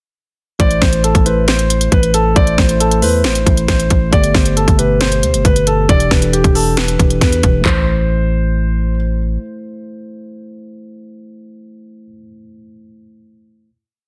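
At 0.6 s a dark grand piano, a tine electric piano, a growling 808-style bass and a trap drum kit all enter together, opening a brooding, eerie trap piece in A minor at 136 BPM with a half-time feel. The drums sit up front in a bouncy beat, with a hard-clipped kick, sharp snare, crisp sixteenth-note hats, handclaps and toms. The buzzy 808 holds long sub-bass notes that follow the kick, with pitch slides. Over this, the filtered grand piano repeats a looping melody like a sample, its intimate, vintage tone carrying audible action noise and a tape echo. The electric piano supplies clean, spread-voiced rhythmic chords through Am, Gadd9 and Em7, also repeated like a loop. At 7.7 s the hook settles on a final Am chord, and once the bass drops out at 9.4 s the electric piano rings on alone until 13.7 s, all set in a dense, heavily limited modern master with digital ambience.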